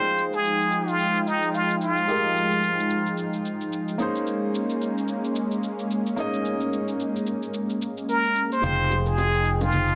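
A dense, heavily limited modern mix with light reverb and studio ambience carries this hypnotic, deep amapiano excerpt in F minor at 110 BPM with a swung 16th feel, where a brilliant plunger-muted trumpet with tape echo sings a jazzy wah-wah solo that pauses at 3.4 seconds and returns at 8.1 seconds over a smooth vintage grand piano, a detuned sawtooth analog pad warbling with chorus through Fm9 and Bbm11, and a layered electronic shaker with soft clipping, before a punchy, up-front fingered electric bass and very quiet, bright congas and bongos join at 8.6 seconds.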